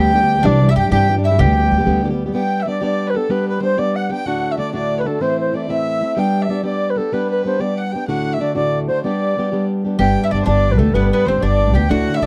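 A bright, reedy baroque flute carries the melody in this cheerful, lively Celtic folk excerpt in 6/8 at 126 BPM in G major, over a boxy, up-front fingerpicked swing-style acoustic guitar and a nasal, gut-string fiddle second line, while a round, double-strung mandolin and a woody pizzicato upright bass play at the opening, drop out at 2.0 and 2.3 seconds respectively, and return together at 10.0 seconds, captured in a dry, close 1970s-style studio sound with small room ambience.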